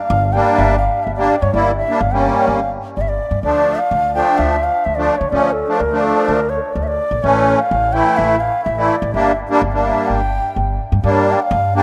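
Soulful and bittersweet, this klezmer passage in straight 4/4 is led by an airy bamboo bansuri, close-miked and played tongued with vibrato, above a reedy, shimmering musette accordion that enters up front at 0.3 seconds. A woody, dark pizzicato upright bass on steel strings anchors the low end as the chords move from Gm through Dm and A back to Gm. The rough home demo mix is bathed in a long, wet plate reverb, and the passage is cut from a longer piece.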